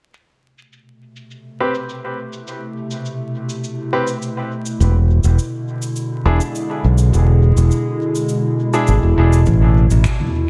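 A straight 4/4 pulse comes from a distant, roomy soft-mallet drum kit of cabasa, finger snaps and toms, softened by low-pass filtering. This spacious, meditative ambient dub excerpt sits in a light reverb with a layer of vinyl crackle. A warbling, nostalgic pad fades in, holding sustained chords through chorus, built-in reverb and phaser, while a woody, brilliant upright piano drops short stabs coated in vintage 12-bit sampler grit and dub echo, with a filter sweep running across it. At 4.8 seconds a punchy fingered electric bass enters up front, anchoring the move from Am9 to E7. At 9.5 seconds a muffled, thumpy electronic kick joins in the background as the harmony returns to Am9.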